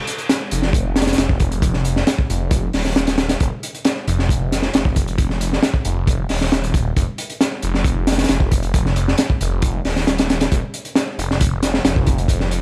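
A straight 4/4 breakbeat groove at 135 BPM drives this raw, funky breaks excerpt, with a crunchy, gritty drum kit of hi-hat, tight kick and high-tuned snare sitting up front under a rolled-off top, joined at 0.5 seconds by a swirling, thick detuned saw bass with phaser and tube saturation holding low between Eb1 and F1, all dry and dusted with vinyl crackle.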